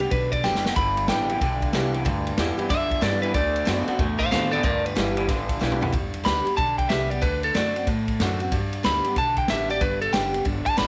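A twangy lead electric guitar at the edge of break-up sits up front with tape echo, playing a bright, clean solo across this upbeat, retro rockabilly excerpt cut from a longer piece. Beneath it, a picked steel-string acoustic guitar with fresh strings adds a full-bodied accompaniment, while a pizzicato upright bass with gut strings gives a woody, thumpy low end. A second electric guitar, lo-fi and slightly broken-up through a small old amp, plays a riff from 0.8 to 5.9 seconds. The vintage drum kit, with kick, snare, toms and ride, has dark cymbals, a punchy kick and a rolled-off top, and it plays short fills at 0.4 seconds and again at 5.6 seconds, just before the passage repeats. The swung groove moves between G and D7 chords, set in a small room with light reverb.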